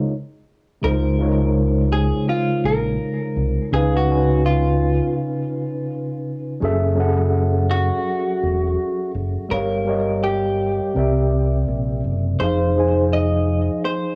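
A semi-hollow electric guitar carries the melody over a mellow tine electric piano from the first moment of this cosy lo-fi hip hop excerpt, cut from a longer piece. After a brief stop from 0.1 to 0.8 seconds, a deep dub fingered electric bass enters at 0.8 seconds, round, dark and punchy, and holds down the low end until 13.7 seconds. The tempo sits at 83 BPM in 4/4 with a lazy 16th-note swing, and the harmony moves from Dbmaj13 through Db7, Gbm9, Gm7b5 and C7 before settling on Fm7. The guitar is clean, picked and compressed, with a hollow-body tone softened by subtle chorus, a low-pass filter, cassette tape colour, plate reverb and analog delay. The electric piano sounds gentle, as if heard through built-in speakers, and is dulled by its own low-pass filter and plate reverb. All three parts sit up front in a small, homely cassette recording with a moderate booth ambience.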